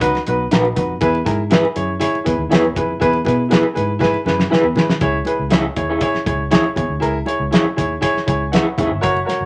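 Danceable and uplifting, this uptempo 1960s-style soul excerpt moves at 120 BPM in a straight 4/4, riding B and E chords before shifting to C#m at 5.0 s. A woody, intimate upright piano with audible action noise and a cloth-damped, thuddy drum kit with a fat snare sit up front over a dark, round, foam-muted electric bass, while very quiet, close and dry congas played with hard hands add color, and a twangy, slightly broken-up electric guitar through a small old amp plays tremolo stabs from 0.5 s. A drum fill leads into the second section, the piano takes a fill at 8.0 s, and a moderate club reverb gives the room a lively feel.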